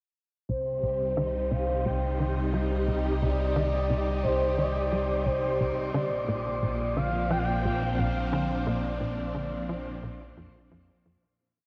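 A tight sequencer bass sets a straight 4/4 pulse at 88 BPM, its punchy seven-step loop of sawtooth and square tones drifting against the bar in the background, roughened by ring modulation, 12-bit sampler grit, chorus and delay, with a filter sweep running across it. This is cosmic, hypnotic ambient space music in C minor, moving from Cm to Bb at 5.9 seconds. A swirling, bright string machine sits up front with slowly shifting sustained chords, colored by ensemble chorus and phaser, while a deep, round sine sub bass holds the root underneath. Above them, a smooth, expressive synth lead traces arch-shaped motifs in a dark sawtooth tone with vibrato, a moving notch, subtle chorus and delay. The whole piece floats in a shimmering reverb with a long 6.7-second tail and carries the worn, warbling pitch drift of old cassette tape, before fading out from 7.8 seconds.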